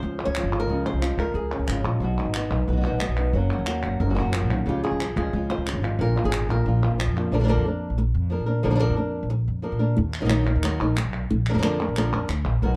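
A dark, warm production with light reverb frames this dramatic, passionate flamenco excerpt, which drives along at a brisk 181 BPM in a straight 4/4. Up front, a fingerpicked flamenco guitar with the woody tone of old strings carries the melody throughout, while a growly pizzicato upright bass sits equally close beneath it. A second, darker fingerpicked guitar adds chordal stabs over harmony moving from Db through B, Gb and Bb, and crisp palmas hand claps ring out in a live room. At 7.3 seconds the stabs and claps drop away, leaving the lead guitar and bass to move the harmony toward Ebm. The claps return at 10.1 seconds, and the stabbing guitar reappears only in the closing moments before the cut.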